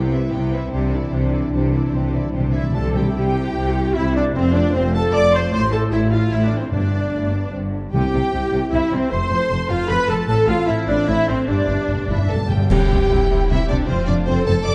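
Soaring and triumphant, this heroic adventure film cue in C major moves at 151 BPM in 3/4, with a lush violin section carrying the melody over a smooth second violin line, distant violas, and French horn chords held in the background. Rich cellos and up-front double basses anchor the bass while round, soft-mallet timpani enter at 0.7 s, and a bright clarinet and an airy, close-miked flute group add second lines from 2.5 s. A dark cymbal swell, clash cymbals and concert bass drum come in at 10.3 s, building to a band accent at 12.7 s, all set in a moderate scoring-stage reverb with a dark production.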